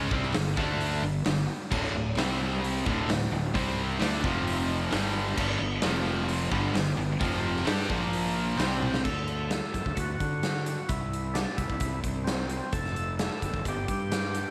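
Classic rock with a swaggering, sunny mood at 131 BPM in a straight 4/4, where three picked, overdriven and distorted electric guitars sit in the background playing a riff over power-chord changes until 9.0 seconds, backed by a growly fuzz-fingered bass and a punchy, up-front drum kit with bright cymbals in a stone room, plus crisp, barely audible vintage handclaps. A thick, gritty tonewheel organ on a slow rotary speaker enters at 8.6 seconds, and a drum fill at 8.8 seconds leads into a new section where the guitars stop and the organ takes the melody over the bass and drums, moving through D, C, F and Gsus2. The whole short cut sits in a moderate studio echo chamber that gives it a roomy feel.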